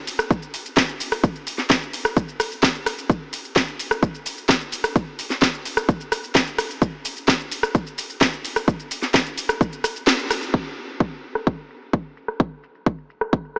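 Euphoric and powerful, this 129 BPM EDM drop in straight 4/4 is cut from a longer piece and puts a punchy, layered electronic kick up front beneath a house drum kit of cracking snare, metallic low-pass-filtered hi-hats, rim click and shaker, all soaked in a huge ambient reverb with a small-speaker tone, until a band accent at 10.1 seconds lands as the kick briefly drops out, before it returns at 10.5 seconds.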